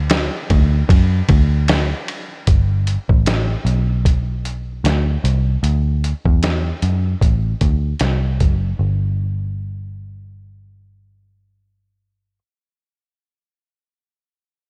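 Nostalgic and hazy, this short excerpt of indie and bedroom pop moves at an unhurried 76 BPM in 4/4, with a gentle swing on the sixteenth notes and a home key of G major. A vintage muted electric bass, picked and foam-muted, sits up front with a dark, round, amped tone, holding the low end in its register between F#1 and F#2. Beside it, a lo-fi sampler-style drum kit of kick, snare, hi-hat and ride sounds compressed, pitched down and muffled, with a thumpy kick, a medium-tuned snare and the character of being re-recorded in a small room. The drums drop away at 8.6 seconds, leaving the bass alone until 12.4 seconds. A light reverb softens the whole mix into a hazy glow.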